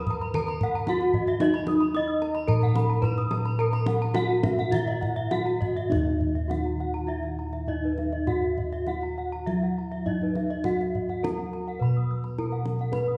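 Shimmering and hypnotic, this cut from a longer piece of Balinese gamelan moves in a straight 4/4 at 101-113 BPM in Eb pelog. A bronze metallophone struck with a wooden mallet carries an airy melody, while two more metallophones ring out arpeggios above it: one played with a horn mallet and sounding boxy, the other played with a wooden mallet. All three are in paired tuning that makes them beat and shimmer. Underneath, bossed gongs played with padded beaters give a round, mellow bass up front, the kendang adds deep, close and dry drumming, and the whole ensemble sits further back in a recital hall's reverb, shifting into a new section at 5.9 seconds.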